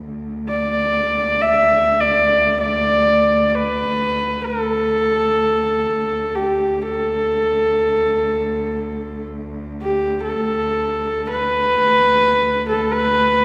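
Mongolian traditional folk in free time and D zhi mode, this proud, galloping excerpt sets a husky, earthy horsehead fiddle melody with portamento and slapback echo up front from 0.5 seconds against a rich, expressive bowed cello drone on a low D with vibrato and soft attack, all bathed in a scoring stage reverb heard from further back in the room.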